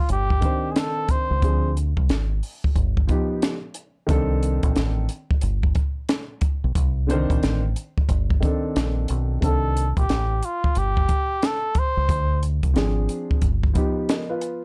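Jazz-hop in C dorian at 90 BPM with a swung 16th-note feel, this smoky, cool excerpt cycles through Cm69, Dm7b5 and Gaug7 chords on a dry, gritty recording. A compact cocktail drum kit with a punchy kick and high-tuned snare, a round, amped fingered electric bass with tube saturation, and a dark, mellow grand piano with short sustain hold the groove up front. A breathy, veiled cup-muted trumpet with light vibrato states a brief solo line at the start, then returns at 9.4 seconds until 12.4 seconds.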